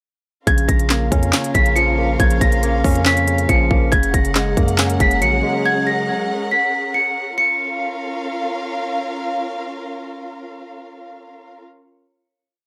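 Hip hop in a trap style, melancholic in mood, running at 139 BPM with a half-time feel in Bb phrygian, set in a dry, gritty hardware sound with digital ambience. A slightly out-of-tune, bell-like celesta with tape echo carries a looping melody from a boxy small room, while a barky tine electric piano repeats a rising eighth-note arpeggio, a dark studio string section holds bowed chords with vibrato and portamento, a deep sine 808-style bass plays long sub notes with pitch slides that follow the kick, and an up-front trap kit bounces with a hard-clipped kick, crisp sixteenth-note hats and a sharp snare layered with handclaps. The drums and bass drop out near 5.3 seconds, a final Bbm chord arrives at 7.4 seconds, and the strings linger last until 11.6 seconds.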